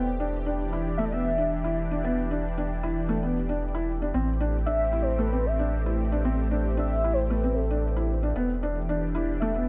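Bathed in a huge ambient reverb, this melancholic, intimate electronica excerpt at 114 BPM in E minor sets a soft, felt-muted upright piano riff with digital delay over a deep, round sub bass and a lush, detuned unison pad with chorus and phaser holding Em7 and Am7, while a velvety, wave-folded synth lead with vibrato, chorus and delay carries the melody from 1.0 seconds.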